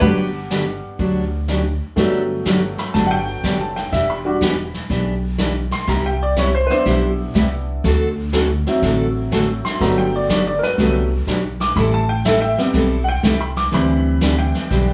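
Recorded as a band playing live in one room with moderate studio reverb, this cheerful, down-home western swing excerpt in G major moves at 122 BPM with a swung 4/4 feel, opening with a dark, clean hollow-body archtop guitar melody shadowed by a metallic, nasal slide resonator line that both stop at 1.4 seconds. From 2.0 seconds the clear, slightly detuned upright piano takes an up-front solo over rich seventh and ninth chords, backed by a full-bodied picked dreadnought acoustic guitar and a woody, thumpy pizzicato upright bass. A distant, roomy vintage brush kit with a tight kick and rolled-off top keeps time through to the close at 14.9 seconds.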